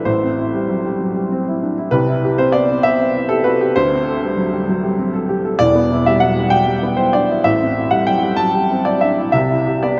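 A woody, natural upright piano sits up front and plays alone across the full 10 seconds, ranging from E1 to A5 in a reflective, wistful neoclassical minimalist piece. The playing moves in a rubato 6/8 at about 65 BPM in dotted quarters, tuned to A4 = 439 Hz, and cycles through Am7, Cmaj7, D7sus4 and Em7 before returning to Am7 and Cmaj7. A wet cathedral reverb with a 5.6-second decay places the instrument in a vast, echoing space, and the recording ends as a fragment cut from a longer work.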